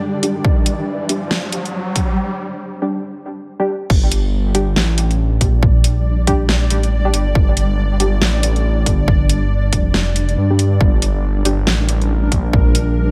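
This deep dubstep excerpt, cut from a longer piece, feels cavernous and heavy, rolling in a swung half-time pulse. It opens on a build-up where a cloudy, blurred granular pad holds sustained chords, an electronic riser climbs, and a very quiet flickering, grainy texture glimmers, while a muted, detuned dub chord stab passes through a filter sweep with lush chorus and dub echo. A brief break follows the riser before the drop lands at 3.9 seconds. There the dark detuned saw bass enters up front, deep, rumbling and saturated, with a beating unison edge. Alongside it, the punchy, tape-tinged electronic kick and a dubstep kit of crash cymbal, metallic hats and a huge snare, both running since the opening fraction of a second, hit hard and forward. The mix sits in light reverb and a digital ambience, with the mellow, full-bodied pad carrying on to 13.1 seconds.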